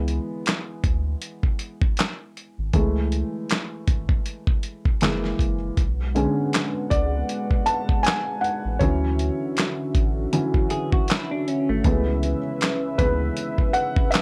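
A swung 16th-note groove at 79 BPM in 4/4 sets up this nostalgic, reflective lo-fi hip hop excerpt, carried by a gritty, compressed sampler-style drum kit with a thumpy kick, medium-tuned snare, hi-hat and handclaps that sits up front with a small-room character. A felt-muted upright piano takes the lead throughout, its mellow, intimate tone coloured by cassette tape and audible action noise as it moves through rootless C#m7, Amaj7, F#7, Bm69 and Dmaj9 before returning to C#m7. Beneath it, a deep, round dub sub bass holds down the low end until 13.3 seconds. At 5.8 seconds a dark, detuned analog pad enters with slow-blooming sustained chords and a moody chorus shimmer. A clean, picked electric guitar adds a brief second line between 10.7 and 12.0 seconds, softened by lush chorus and analog delay, all set in a moderate studio ambience.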